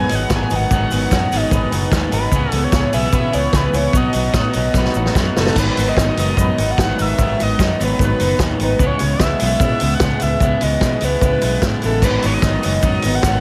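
Indie rock with a jangly, upbeat mood, cut from a longer piece in a straight 4/4 with an echo-heavy mix. A gritty, screaming synth lead carries the melody, its sawtooth and pulse-wave tone distorted and guitar-like, with vibrato and analog delay trailing its sustained notes. Two electric guitars play riffs beneath it: one twangy and fingered at the edge of break-up, the other picked through a small old amp, lo-fi and compressed in the background with analog chorus and delay. A round, amped fingered bass and an up-front vintage drum kit with dark cymbals, a punchy kick and a touch of analog delay drive the groove, with a drum fill leading into the second pass. A grainy tube shaker sits quietly behind, while a buzzy combo organ holds very quiet sustained chords before dropping out at 5.5 seconds and returning at 12.0 seconds.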